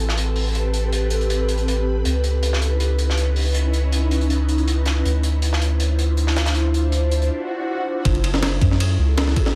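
A light, small-room reverb frames this nostalgic, atmospheric drum and bass cut with a jungle flavour, taken from a longer piece. An ethereal, airy pad sustains minor-ninth chords throughout, its detuned unison voices thickened by ensemble chorus, built-in reverb and phaser. Beneath it sits a deep, round sub bass that stays prominent in the mix. A crunchy, saturated breakbeat kit of hi-hat and snare plays quietly with a rolled-off top and small room ambience until 7.3 seconds, when a brief break opens and an electronic swell fills the gap. At 8.1 seconds the drop brings in a compressed, pitched-up sampler-style kit with a thumpy kick, a high-tuned snare and ride cymbal, tape-toned and up front.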